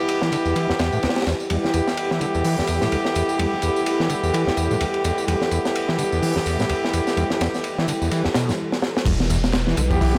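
A raw, funky breakbeat fragment opens on a dark, detuned analog pad holding an E minor chord in the background, pumping under sidechain, while an up-front brass section fires bright stabs roughened by vintage 12-bit sampler grit and trailed by dub echo. A crunchy, saturated drum kit enters almost at once with a swung feel, its tight kick, high-tuned snare and dusky cymbals close and up front with a rolled-off top, joined by a faint layer of tape-tinged electronic tambourine and handclaps. A squelchy, distorted sawtooth acid bass drives a resonant riff under a long filter sweep, thickened by ensemble chorus and dub echo. Soft-handed, band-limited congas slip into the background at 1.5 seconds. After a short break and drum fill, the drop at 9.1 seconds brings in a deep, thick sine sub bass up front and a background downlifter, all set in light small-room ambience.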